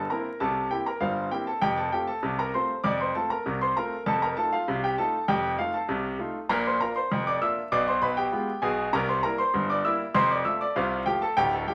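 A bright concert grand piano plays solo throughout this lively, playful ragtime fragment in F major, moving at 98 BPM in a straight 2/4 feel and ranging from deep bass notes up to sparkling high treble. The piano sits up front with a polished, short-sustained tone, moving from C7 to F and F7, then through Bb and a Bdim7 before returning by way of C7 to F at 10.2 seconds. A wet studio reverb and a layer of vinyl crackle give the recording an old-time character, and it is cut from a longer piece.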